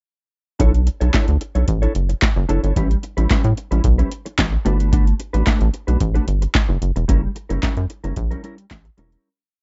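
Slick and danceable, this short early-eighties boogie funk piece moves at 111 BPM in a straight 4/4 feel in B minor, and the whole thing plays as a breakdown from 0.6 seconds. An analog electro drum machine sits up front with a four-on-the-floor boogie beat: a deep kick, a punchy snare layered with handclaps, and metallic hi-hats, with a short room on the snare, clap and hats. A rubbery square-wave bass, also up front, bounces through a fat syncopated boogie line with muted ghost notes; its hollow, resonant filter pluck has a fast attack and a sustained tail. Further back, a clean, fingered and compressed electric guitar plays a choppy sixteenth-note riff with an ensemble chorus. The chords move from Bm11 to A9, Gmaj9 and F#7b9. The production is dark and dry with little reverb, and the music fades out from 7.1 seconds to the end at 9.2 seconds.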